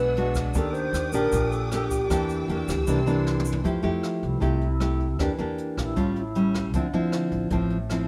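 Sophisticated and romantic, this bossa nova fragment at 155 BPM in 4/4 sets a full-bodied, up-front fingerpicked nylon-string guitar and a woody, thumpy pizzicato upright bass beneath a distant, reedy alto flute with vibrato, while lush bowed symphonic strings hold chords and a grainy egg shaker sits in the background until 3.6 seconds, when, after a boomy-kicked brushed drum fill from 3.3 seconds, the music settles into F major and the flute takes a solo over extended jazz chords in light reverb.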